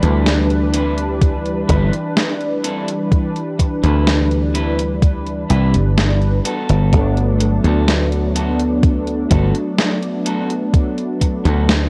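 Gritty cassette-tape sound with light reverb frames this dreamy, woozy vaporwave fragment at 63 BPM, where a mellow, detuned sawtooth synth brass carries the Cmaj7/G to Gmaj9 harmony through lush chorus and tape echo, a dark, slightly broken-up picked electric guitar riff sits behind it with subtle chorus and echo, a bright, foam-muted thumbed slap bass punches up front with tube saturation, and an overdriven, sampler-style 80s drum machine with gated-reverb snare and hi-hat is joined at 1.2 s by a thumpy electronic kick.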